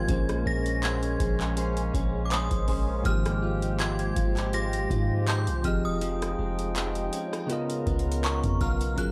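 Longing and moody, this short cut from a longer contemporary R&B piece moves at 81 BPM in 4/4 with a light 16th-note swing, captured as a dry, gritty hardware recording. A booming analog drum machine enters at 0.1 seconds with a deep kick, metallic hi-hats, handclaps and rim clicks, sitting up front with a tape-tinged small-room character. Beneath it, a long, sustained 808-style bass with a mellow sine tone anchors the low end. A bell-like tine electric piano carries the accompaniment, and a direct-recorded clean electric guitar plays compressed, picked arpeggios colored by ensemble chorus and tape echo. A dark, distant brass ensemble holds soft-edged chords that pump against the sidechain. On top, an inharmonic FM synth chime sings the high melody through chorus, phaser, tremolo and tape echo, over a progression that moves from Bbm9 through Abmaj13 and Fm9 to Db13.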